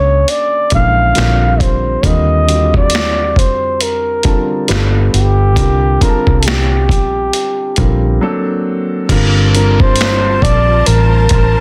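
R&B and neo-soul at a slow 68 BPM in G minor, this soulful, smooth excerpt from a longer piece sets a breathy, whispered flugelhorn melody with slapback echo and plate reverb up front over a woody upright piano, a round, foam-muted electric bass and a gritty, pitched-down boom bap drum kit with a thumpy kick and a high-tuned snare, all pausing in a silent gap from 8.2 to 9.1 seconds before a bowed string section enters with sustained chords as the harmony lands on Gm11, in a dense, heavily limited modern master.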